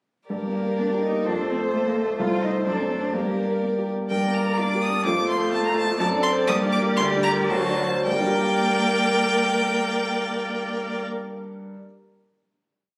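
A quick, urgent and stormy classical-period movement for piano quintet in G minor, moving at 107-128 BPM in 2/4, opens with all five players together: the focused, vibrato-rich first violin carries the melody up front, the expressive second violin and the soft-attacked, smooth-topped viola sound sustained chords in the rhythm of the tune with portamento, the distant cello weaves melody, counter-melody and held chords, and an open, long-sustaining baby grand rocks through broken chords. The music slows from 5.5 s to 8.1 s into a final G minor chord, and the piano rings on after the strings stop at 11.0 s until 11.9 s, all set in a wet recital hall reverb captured on a phone in the room.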